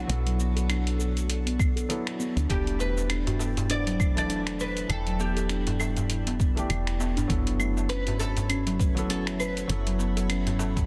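A deep, produced electronic kick drum arrives at 1.6 seconds and anchors this hypnotic organic downtempo excerpt at 100 BPM in 4/4, with a 16th-note swing. Beneath it, a dark, round FM bass sits up front with tube saturation and sidechain pumping, while a gritty, sampler-style soul kit adds cabasa, claves, finger snaps and hi-hat, its snare softly clipped. A crisp, metal-shelled darbuka played with hard hands joins at 2.7 seconds. Over this, a bright, plectrum-plucked fretless oud carries the melody through a digital delay, and a ringing steel tongue drum struck with soft rubber mallets spins arpeggios through tape echo. A muted, intimate felt upright piano supplies accompaniment with its own pumping and tape echo, and a very quiet, blurred granular pad holds evolving sustained chords as the harmony moves from Bm7 to Em7 to F#7sus4. Light small-room reverb frames the warm mood, and the mix is dense and heavily limited.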